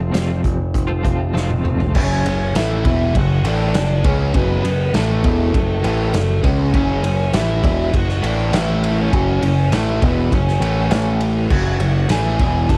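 This brooding, angsty alternative rock opens at 100 BPM on a clean, twangy twelve-string electric guitar picking tremolo-tinged arpeggios over an F chord, with a growling overdriven bass and a loose indie drum kit (punchy kick, dark cymbals, pumping room sound) whose fill leads into the loud half at 1.9 seconds. There the twelve-string stops, and a double-tracked, compressed fuzz guitar picks out an F# minor riff that alternates with A5, while an octave-fuzz lead guitar adds a dark melody from 2.0 seconds. The dry home cassette recording gives the drums and lead a tape-worn grit, and the clip is cut from a longer piece.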